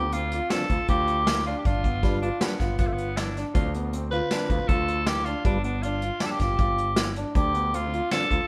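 Tense and driving, this short cut from a longer progressive instrumental moves at 158 BPM in an uneven 5/4 with a straight feel, sitting in D dorian as the harmony rocks between Dm7 and G7. A raspy, gritty tenor saxophone carries the melody up front, its clear vintage tone trailed by delay. Beneath it, a percussive tonewheel organ sits in the background with a soft, flute-like voice, coloured by chorus vibrato and a slow rotary speaker, while a dark, mellow grand piano plays arpeggios in the middle register. A bright, direct picked electric bass holds down the low end, and a vintage brush drum kit enters at 0.1 seconds, sitting up front with a smooth, rolled-off top, a tight kick and a medium-tuned snare on hi-hat, kick and snare. The band plays live together in a stone room filled with moderate reverb.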